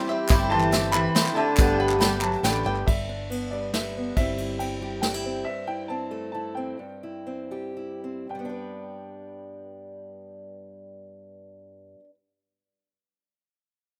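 In a straight 3/4 that moves between 110 and 141 BPM and eases to a slower pace through its middle, this short cut of indie folk in G major feels nostalgic and uplifting as its arrangement builds. A soft brush kit sits up front with a tight kick and a medium-tuned snare, joined briefly by crisp group handclaps in the background, a jingly, very quiet tambourine, and a dark, round hollow-body electric bass. The opening bars also bring a boxy, shimmering twelve-string guitar picked with octave doubling, a twangy banjo playing percussive arpeggios with fingerpicks, and a distant, reedy bowed cello carrying a second line with a gut-string tone. Through the whole passage a clear, woody upright piano, slightly detuned, carries the melody. At 2.9 seconds a fingerpicked archtop guitar takes over the accompaniment up front, its finger squeaks audible, while the chords move among G, C/G and Am/G. 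Small-room ambience gives the recording the rough character of a home demo.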